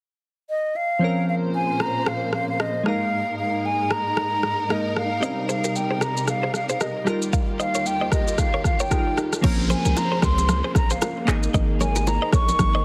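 Afrobeats in a sultry, hypnotic mood, with a swung groove, cut from a longer piece. A hollow, pure concert flute carries the melody from 0.5 seconds, close-miked and up front with vibrato and tongued notes. Glassy digital keys follow with chorus, phaser and a filter sweep, alongside a lush, distant string section bowing sustained chords with vibrato and portamento. The electronic afro-pop drum kit sits up front with a deep kick, rim click, handclaps, shaker and crash cymbal, and a twangy, clean electric guitar riff arrives at 5.2 seconds, picked and compressed with delay. At 9.4 seconds a punchy, heavy 808-style bass enters with dry, hard-hand congas and bongos in the background, and a faint electronic downlifter follows a moment later, while the whole mix carries a heavily compressed, radio-like character.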